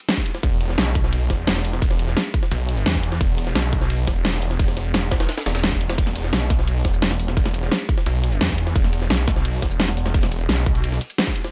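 Mechanical and futuristic, this dark technical drum and bass excerpt runs at 173 BPM, with a punchy electronic kick and a dubstep kit's huge snare, crash, hi-hat and shaker up front in a small, dry room, a gritty, pitched-up jungle sampler-style kit with a high-tuned snare, hi-hat and ride sitting filtered in the background, and a snarling, growling distorted saw bass with detuned sawtooth, square and sine layers, a moving notch and sidechain pumping spanning E1 to E2 from 0.4 seconds.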